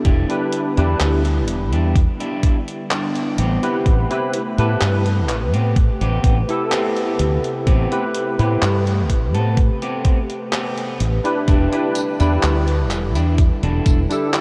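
An electric piano with a bright, barky tine tone, washed in ensemble chorus and delay, opens this hazy, melancholic vaporwave excerpt in A minor at 63 BPM alongside a warbling, detuned tape-like pad and a picked electric guitar riff at the edge of break-up with subtle chorus and 12-bit sampler grit, while from 0.1 seconds a round, punchy fretless bass and a thumpy electronic kick sit up front beneath a detuned 8-bit drum machine of handclaps, hi-hat and tambourine, the chords moving from Em7 to Am9 and back to Em7 in a dreamy cassette mix soaked in huge ambient reverb.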